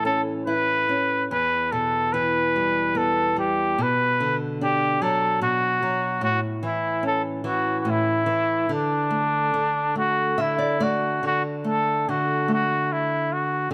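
Innocent and sleepy, this short excerpt of a rubato children's lullaby in D major drifts at 48 BPM in 6/8, with a breathy trumpet singing a soft-attacked, vintage-toned melody full of vibrato, up front and intimate over a bright, fingerpicked nylon-string guitar that moves through A, Em, Bm and back to A before settling on D5, adds a small fill at 10.0 seconds, and leads into a brief new section at 11.2 seconds, all captured by close, detailed microphones in light reverb.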